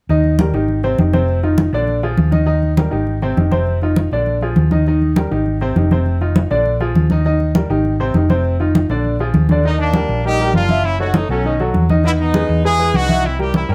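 A festive, danceable salsa excerpt in Eb major, moving at a brisk 201 BPM in a straight 4/4. From the start, a bright upright piano with a woody, brilliant tone and audible action noise carries the accompaniment, cycling through Eb, Abmaj7, F5 and Bb7, while a dark, round hollow-body electric bass sits up front and congas with thick, damped skins and soft hands fill out the groove. At 9.6 s the harmony shifts to a richer passage of Ebmaj9, Gbm7, B7, Emaj9 and C7, and a clear, punchy horn section enters with the melody, its light vibrato giving the ensemble a pop polish. Moderate studio reverb lends the intimate, close-miked sound a modest sense of room.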